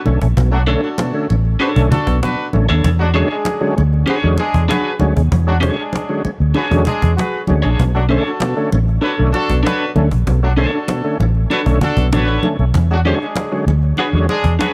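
Hypnotic and cool, this funk excerpt cut from a longer piece rides a round, foam-muted electric bass up front, with woody close cajon and bright, damped congas under gritty overdriven organ stabs swirling through slow rotary speaker, chorus vibrato and tape echo, while a tight horn section with light vibrato carries a second line from 0.5 s and a slightly broken-up, scooped guitar with harmonic tremolo adds accompaniment from 0.7 s, all cycling between Bm9 and E13 in a small room.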